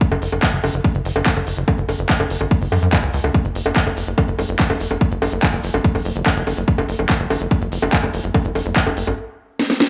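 A heavy, overdriven electronic kick drum drives this intense, alien psychedelic trance clip at 144 BPM in straight 4/4 alongside a layered techno kit of cracking snare, smooth hi-hats, bongos and handclaps, while a tight, punchy, wave-folded sequencer bass with a saturated filter pluck runs from F#1 to F#2 beneath light digital ambience, and a drum fill arrives at 9.6 seconds.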